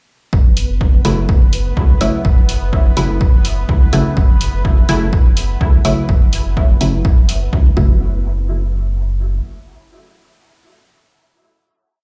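A muted, detuned sawtooth chord stab drifts through this short, hypnotic dub techno piece, its sparse echoing hits moved in parallel through chorus, phaser and dub echo and pumping against the kick from 1.0 s until the stab rings out alone at the end. Beneath it a round sine sub bass carries a dotted rhythm, while a punchy analog four-on-the-floor kick sits up front with programmed hi-hats, both re-recorded in a small room. A bubbling, resonant texture of random filter steps holds a bright high note under chorus and its own reverb, adding a hazy shimmer to the groove over an F#m7 until the final hit at 8.0 s.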